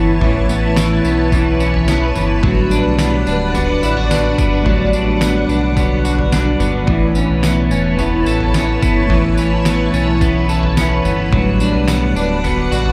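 A mellow, dark electric guitar with tremolo sits in the background as a soft, silky string machine holds sustained chords through a phaser and ensemble chorus, while a deep sine sub bass anchors the low end and an up-front, slightly broken-up guitar plays picked arpeggios drenched in lush chorus and delay. At 0.2 seconds a detuned 8-bit drum machine enters with a thumpy kick, medium-tuned snare, tambourine and toms, overdriven and re-recorded in a small room, driving a straight 108 BPM dream pop groove in A mixolydian. The floating, dreamy mix is soaked in plate reverb as the harmony alternates between Aadd9 and Gmaj7 across this fragment of a longer piece.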